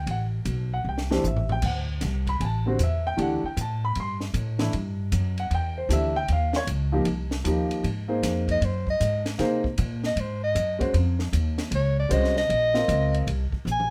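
A club sound with a moderate reverb carries this hypnotic, searching modal jazz excerpt at 155 BPM, swung in 4/4 and shifting from D mixolydian to Ab mixolydian at 7.8 s, as a natural-toned grand piano comps over woody, growly pizzicato upright bass and a dry cocktail drum kit with dark cymbals, a high-tuned snare and punchy kick that plays a fill early on, before a mellow soprano saxophone enters at 8.5 s for a smooth, lightly vibratoed solo with soft attacks and scooped notes over chords moving from D9sus4 through Eb13 and Ab13 to Bbm.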